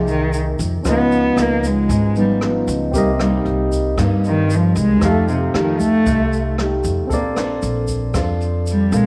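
This short bossa nova clip is cut from a longer piece and sits in a small room with light reverb, giving it a smooth, wistful sound. A dark, bowed cello carries the melody as a solo from start to finish, played by one player with vibrato and placed up front. Beneath it, a thumb-plucked classical nylon-string guitar with fresh strings and a bright, barky tine electric piano, clean and set in the background, supply the accompaniment. A woody pizzicato upright bass holds the low end, and from 0.1 seconds a jazz kit played with brushes adds hi-hat, a boomy kick and rim clicks, alongside a grainy, band-limited tube shaker low in the mix. The harmony moves from Fm11 through Db9, Cm7 and F9 to Bbmaj9 over a straight 4/4 feel.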